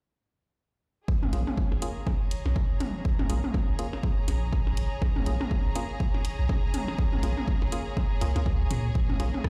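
Minimal techno at 122 BPM in Bb minor, cool and clinical, this swung 4/4 passage cut from a longer piece sits on a single Bbm7 chord from 1.1 seconds, as an overdriven, dry, up-front electronic kick and a deep sine sub bass with a pitch-drop attack, tube saturation and sidechain pumping drive it. An overdriven analog drum machine supplies hi-hat and rim click, while tape-warm electronic toms and percussion blips carry delay, and a hollow, dark organ stab with chorus and delay enters at 1.3 seconds. Behind them, a rich, smooth bowed string ensemble with light vibrato pumps softly in the background, and the mix sounds as if played on a big sound system in a bare room.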